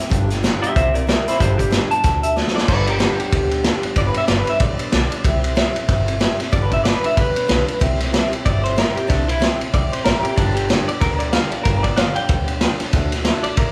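Swung eighth notes in 4/4 drive this rowdy, retro rockabilly passage, cut from a longer piece, where a vintage drum kit sits up front with a punchy kick, dark cymbals and a short fill at 2.4 s, while a woody, thumpy upright bass plucks its gut strings underneath. A bright, full-bodied steel-string acoustic guitar plays picked accompaniment over G, C and D chords, and from 0.6 s an electric guitar through a small old amp carries the fingered melody with a slightly broken-up, lo-fi, compressed tone and spring reverb. The band plays live together in one room, with a moderate large studio reverb around them.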